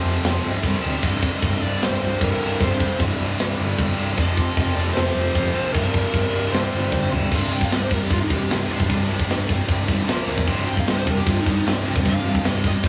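A rough rehearsal-room recording with small-room ambience and a light reverb frames this aggressive, heavy metal cut from a longer piece, set at 152 BPM in 4/4 with a straight feel and tuned to A4 = 439 Hz. Three picked, distorted rhythm guitars share the riff over power chords moving between F5, C5 and Bb5: a scooped, double-tracked high-gain guitar and a tight distorted guitar sit in the background, while a very quiet heavy high-gain guitar fills in underneath. A fuzz-toned, growly electric bass with overdrive drives the low end, and a tight acoustic drum kit enters at 0.2 seconds, up front with bright cymbals, a medium-tuned snare, tight kick, toms and crash. A very quiet bowed string section holds sustained chords with light vibrato and a smooth top, adding a biting, intense layer behind the guitars. A dark high-gain lead guitar carries the melody from 1.0 seconds over a half-time opening, and after a drum fill the music moves at 7.3 seconds into a lead guitar solo.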